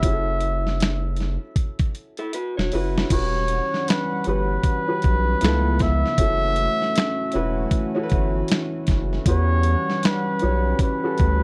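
A breathy, cup-muted trumpet carries a sultry neo-soul R&B melody at 78 BPM in E dorian, backed by warm grand piano, a round analog bass, and a gritty, compressed sampler-style drum kit with snaps, while a slightly broken-up guitar line appears at 2.2 seconds and a shimmering, chorused pulse-width pad holds dark sustained chords from 3.1 seconds in this dry, close, 1970s-style excerpt.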